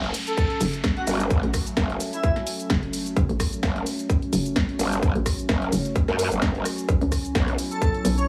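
A tight, up-front electronic mix in a small room with light reverb opens this swaggering, aggressive bass house excerpt at 129 BPM, set in F# phrygian with a 55% swing on the sixteenths and moving from F#m to Bsus2 at 6.9 seconds. A growling, wobbling growl bass sits at the front, bright and saturated with tube drive, chorus and sidechain pumping, while a hollow, bouncy FM bass with a fast attack and short decay knocks beneath it from 0.6 seconds. A house kit with a punchy snare, rim click, shaker and tape-warm hi-hats runs from the start, joined at 0.4 seconds by the tight, layered electronic kick drum. An evolving sawtooth-and-triangle pad, wave-folded and resonant with a filter swell, phaser, chorus and sidechain pumping, holds sustained chords underneath, and an electronic downlifter hovers in the background for the opening seconds. An airy, dreamy unison lead with vibrato, chorus and digital delay floats a soft melody early on and returns near the end, where a very quiet, warbling lo-fi pad with a nostalgic tone enters at 7.6 seconds.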